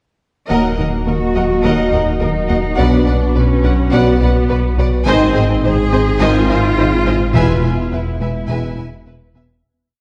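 A rich chamber violin section carries the melody in a relentless bowed ostinato, with a second, more distant violin section and lush violas driving beneath it in the background. A clear cello section adds its own line over a bowed double bass ostinato and a deep sine sub bass, while very quiet, mellow French horns and trombones play short accented chords, a hollow, flute-like pad with chorus holds sustained chords, and a soft, round pluck pulses with a filter sweep, lending this hybrid orchestral-electronic film cue a futuristic edge. The theme sits back in a reverberant scoring stage and fades out from 7.4 s to 9.6 s.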